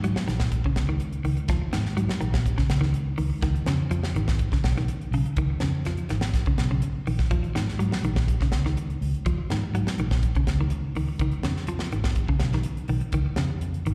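A tight funk drum kit drives a straight 4/4 at 124 BPM, its high-tuned snare, tight kick and hi-hat sounding dry, airy and polished up front for the whole 13.9 seconds. This is an intense, driving afrobeat groove in Eb minor, cut from a longer piece. A fingered electric bass holds down the low end between Ab1 and Ab2 with a round, amped tone. Over it, a clean, picked electric guitar plays arpeggios between Db3 and Gb3, its scooped, up-front sound given a slapback echo. The harmony moves through Eb7(no3), Db9 at 3.4 seconds, Eb7sus4 at 7.3 seconds and back to Db9. It is heard as a live gig through the venue's PA, carrying the reverb of a recital hall.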